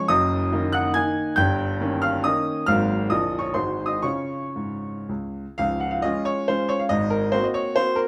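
A romantic classical triple-time dance for solo piano, proud and rustic in mood, moving in dotted rhythms with a flexible rubato feel. The warm, open baby grand sits up front with long sustain in a light reverb, ranging from deep bass to high treble as its harmony passes through Ab13 and Ab7 before settling on Db. A new section begins at 5.6 s and reaches an Ab9 chord at 6.9 s before this brief fragment of a longer piece breaks off at 8.1 s.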